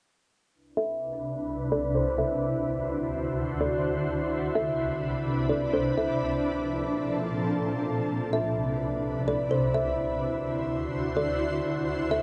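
Hip hop with a half-time feel and a dreamy, blissful mood, cut from a longer piece: a woody, hollow-toned kalimba enters at 0.8 seconds with a soft, ringing melody, and a shimmering, ethereal pad follows at 1.1 seconds, up front with detuned, granular sustained chords, an octave-up shimmer, chorus and reverb. A filter sweep runs through the opening section until 8.1 seconds, while the harmony drifts through Cmaj7, D7 and Bbmaj7. The dark production sits in a moderate booth ambience, and the kalimba's echoing delay adds a gentle haze.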